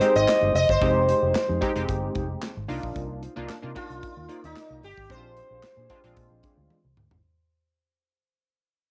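A buzzing, up-front sitar carries the melody from the first moment over a bright, detuned sawtooth polysynth comp with chorus, a dark, clean guitar riff bathed in lush chorus in the background, and a polished, airy drum kit with handclaps, tight kick and toms. This is a funky, danceable early-eighties boogie funk groove at 112 BPM moving through Fm9, Cm11 and Bb9. A round, foam-muted fingered bass joins at 0.2 s, and the whole passage, with its cassette-tape grain and moderate booth ambience, is fading out until a drum fill at 6.7 s closes this excerpt from a longer piece.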